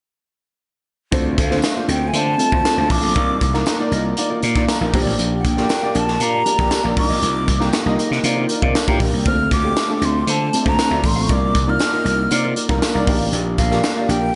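A breathy, vibrato-laden jazz flute carries the melody from 1.4 seconds in this nocturnal, urban excerpt of polished 1980s jazz-funk pop at 118 BPM in C dorian, over a growly, overdriven slap bass, a saturated fusion drum kit with a punchy kick and a high-tuned snare up front, an intimate baby grand piano with audible action noise that adds a fill at 4.4 seconds, a dark, clean electric guitar riff set in the background, and a jingly, distant tambourine, with the mix bathed in a lush hall reverb for a big arena sound with a rolled-off top end.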